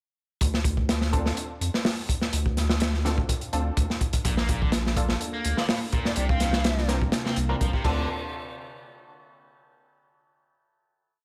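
Swaggering and gritty, this short breakbeat piece in D minor runs at 125 BPM, with a crunchy, saturated breakbeat kit of tight kick, dark cymbals and looped, edited breaks sitting up front over a thick, tube-saturated sub bass playing a dub-style line, while bold, nasal orchestra-hit-like synth stabs echo sparsely through reverb and delay from 1.1 seconds. An overdriven, double-tracked electric guitar enters at 4.2 seconds with a bright, repeating 16-step riff roughened by sampler grit, soon joined by a warbling, nostalgic tape-like pad that pumps in the background, and an airy baroque flute with vibrato adds short answering phrases through an AM radio filter. The chords move from Dm7 through Bbmaj7 and C9sus4 back to Dm7 before the groove gives way to a final hit at 8.1 seconds, all in a small room ambience.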